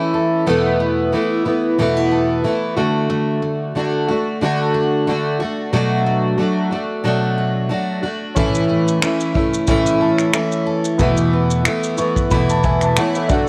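Carefree and heartfelt, this acoustic pop excerpt moves with a gently swung sixteenth-note feel. A double-tracked, fingerpicked plugged-in steel-string guitar carries the accompaniment up front with a concert-body tone, while a second, full-bodied jumbo steel-string guitar is picked in arpeggios beneath it. The harmony drifts from Esus4 through D and Bm7 to A before returning to Esus4. At 8.3 seconds a polished, present grand piano joins, and a moment later a vintage brush kit adds finger snaps, shaker and a punchy kick with a natural small-room character. The piano takes a fill from 11.7 seconds, all under a light reverb.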